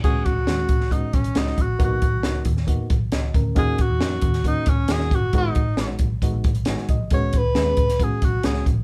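An uptempo, joyful 1960s-style soul excerpt that's made for dancing, with a breathy, mellow tenor saxophone carrying the jazz-tinged melody up front with scooped notes and light vibrato, while a reedy, slightly out-of-tune electric piano with fast tremolo comps and slips in a brief fill at 6.4 seconds, a round, foam-muted picked bass sits in the background, and a compact cocktail drum kit with a punchy kick and high-tuned snare drives it all in a small, lightly reverberant room.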